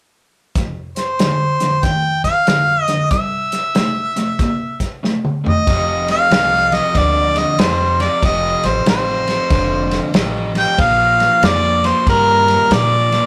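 Overdriven harmonica leads this swaggering, rollicking electric blues shuffle, up front with light vibrato, scooped notes and a smooth top, playing a jazz-style solo from 1.0 seconds. Underneath, a crunchy electric guitar picks a bright, overdriven riff in its lower range, while an acoustic soul drum kit with a small-room sound, dark cymbals, a medium-tuned snare and a tight kick swings along on hi-hat, ride, snare and toms. A drum fill at 5.0 seconds leads into the second section at 5.7 seconds, where a pizzicato upright bass joins with a woody, thumpy tone from its steel strings. The chords move from F5 through C7 to F and then Bb. A moderate reverb and the rough rehearsal-room quality give the recording a loose, lived-in feel, and the passage is cut from a longer piece.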